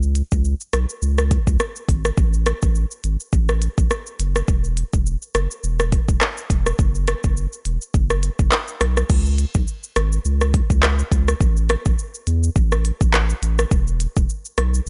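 A lightly swung sixteenth-note groove drives this tough, hypnotic dancehall excerpt, where an overdriven electronic drum kit of deep kick, clicky hi-hats, rim click, handclaps, shaker and crash cymbal sits up front beside a thick, saturated triangle-wave sub bass with a fast attack and sustained notes, all set in a digital ambience with a dark, rolled-off top end and a change of section at 9.1 seconds.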